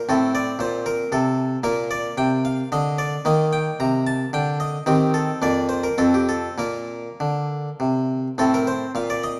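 Radiant and dance-like, this baroque-style classical suite movement in 3/4 features a solo harpsichord of the Italian style, plucked and bright on a single set of strings, placed up front and ranging from F2 to Bb5, moving with a rubato feel through a short cut from a longer piece in a moderate concert hall reverb with a dark production.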